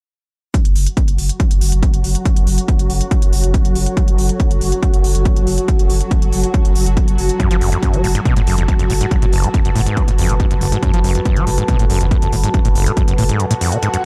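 A straight, driving pulse propels this intense, industrial peak-time techno excerpt, with a heavy, overdriven kick up front over smooth, overdriven hi-hats and a thick, saturated sine sub bass that pumps against the beat. A swarming, nasal drone and a deep, moody pad with chorus and reverb hang behind the groove in a dark digital space, and at 7.4 seconds a squelchy, resonant sawtooth acid bass enters up front with a filter pluck and digital delay. The kick drops out at 13.4 seconds while the other parts carry on, and a brief electronic swell enters in the background from 13.6 seconds.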